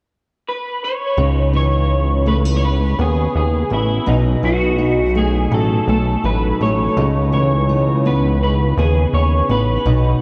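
Lonely and mellow, this short indie pop fragment drifts along at 83 BPM in a straight 4/4, set in C# minor and tuned slightly flat of standard pitch. An up-front electric guitar through a small old amp carries the melody from 0.5 seconds, its bright, twangy, slightly broken-up tone given a lo-fi edge and a touch of analog chorus. At 1.2 seconds a fingerpicked steel-string acoustic guitar joins with a warm accompaniment, its analog chorus and warbly pitch drift lending it a woozy sway, while a chorused synth bass enters beneath it with a glossy, nasal pulse-wave and sawtooth sound, a quick filter pluck and sustained notes sitting up front in the mix. The harmony moves from C#m9 to B7 and back to C#m9. The whole mix is dreamy and soaked in a cathedral reverb lasting 6.9 seconds, with the hazy grain of cassette tape.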